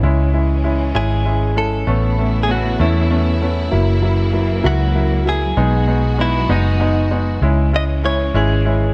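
An aching, melancholic pop ballad in six-eight, this short excerpt from a longer piece opens with piano, strings and bass together and unfolds over a progression from C# minor through Aadd9, F#7 and B6 before returning home. A clear concert grand piano sits up front with a deep low end and short sustain, laying down the accompaniment in its middle register. Beneath it, a vintage muted fingered electric bass is the most prominent part, dark, round and punchy with a foam-muted thump. A clear studio string section holds sustained bowed chords with gentle vibrato and a smooth, lush top, set lower in the mix. At 1.0 seconds a direct-recorded clean electric guitar enters with the picked melody, compressed and scooped, touched with subtle chorus, and the whole sits in light reverb with a small-room ambience.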